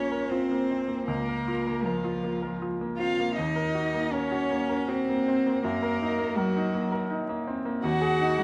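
An up-front cello, smooth and even with vibrato, carries the second line beneath a rich, expressive violin melody sung with vibrato and portamento, while a bright, brilliant baby grand piano supplies the accompaniment in this serene, rubato excerpt in three from a slow romantic piano-trio movement, moving from B-flat minor toward E-flat minor and captured with close, detailed microphones, a moderate concert-hall reverb and vinyl crackle.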